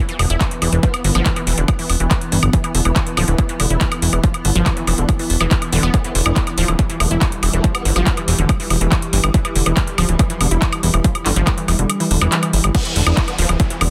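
A dense, heavily limited mix with light digital ambience carries this hypnotic psychedelic trance excerpt in E phrygian at 141 BPM, where a punchy, tape-warm electronic kick and up-front fat detuned sawtooth bass drive beneath a lush, warbling unison pluck riff with 12-bit grit and digital delay, a layered drum kit of metallic hats, handclaps, woodblock and crash, a morphing wavetable pad of sustained chords in the background, and a faint formant-sweep wobble bass with dub echo, until the kick drops out at 11.9 seconds and a downlifter marks the drop at 12.7 seconds.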